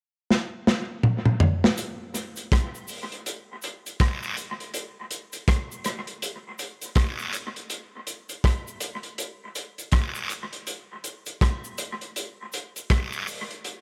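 Reggae at a relaxed 81 BPM in 4/4, with a lilting sixteenth-note swing and a bittersweet, longing mood, taken from a longer piece. A crunchy breakbeat drum kit carries the track, opening at 0.3 seconds with a fill across hi-hat, kick, rim click, snare and toms before settling into the groove at 1.8 seconds. The kit sounds saturated and gritty, with a tight kick, a medium-tuned snare, a rolled-off top and the dark character of a small room, sitting up front and trailed by dub echo. From 1.8 seconds a quieter layer of cabasa and guiro joins, heard as close, dry maracas and group handclaps beneath the drums. The whole is bathed in light reverb, giving the lean arrangement a hazy, intimate feel.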